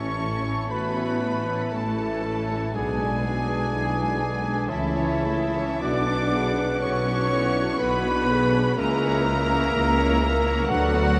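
A rich, focused double bass section anchors this slow, romantic orchestral movement in A major, joined by a roomy tuba and a cello section with a smooth top. Above them, a violin section carries the solemn, yearning melody with vibrato and a distant, even tone, while a second violin section with a soft attack sits lush in the background. An airy, very quiet flute, a clear oboe, a bright clarinet and the second violins weave supporting lines. A mellow bassoon and a very quiet viola section fill out the accompaniment, and a vintage-toned trumpet adds stabs. A French horn section enters at 0.7 seconds with sustained chords. In 3/4 at 51-65 BPM with a rubato feel, the harmony moves from A through diminished and B minor colours, and the whole ensemble sits in a huge, wet reverb that places it in a vast, echoing space, ending on Bm/D at 10.7 seconds as the cut from a longer piece closes.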